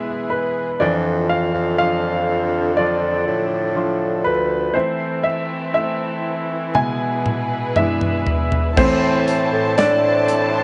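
An intimate concert grand piano carries the melody of this melancholic, emotional pop ballad, placed up front with a slapback echo, deep bass and audible action noise. Beneath it sit a polished baby grand accompaniment, a veiled, con sordino string section holding soft-attack chords, and a solo bassoon playing the bass line in classical style with light vibrato. A small-room acoustic drum kit with a punchy kick enters at 6.7 s with a fill that leads into a new section at 8.8 s, where a dark, fingerpicked nylon-string guitar adds very quiet arpeggios under light reverb.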